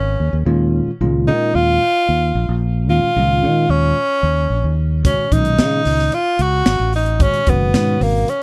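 A dark, warm mix with light reverb frames this short slice of slick, nocturnal electric jazz fusion at 111 BPM in a straight 4/4, where a bright tenor saxophone with soft attack and vibrato carries the solo melody up front over a round, punchy fingered electric bass. A bell-like, clean tine electric piano comps from 0.5 s through sus4 ninth chords into a closing G#m11. At 5.0 s a crisp fusion drum kit joins with an airy room sound, a high-tuned snare, hi-hat and a punchy kick.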